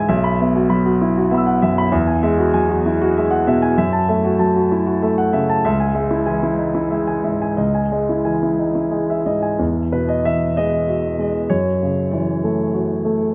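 Neoclassical minimalist piano in 6/8 at 58-66 BPM, intimate and wistful, with a rubato feel that lets the short excerpt breathe through chords like Bsus4, Eadd9, F#m7 and C#madd9. A solo concert grand plays throughout, up front with a deep bass reaching down to B1 and a tape echo on its tone. A wet small room reverb surrounds it, and a new section begins at 9.6 seconds, returning to Eadd9 and F#m7.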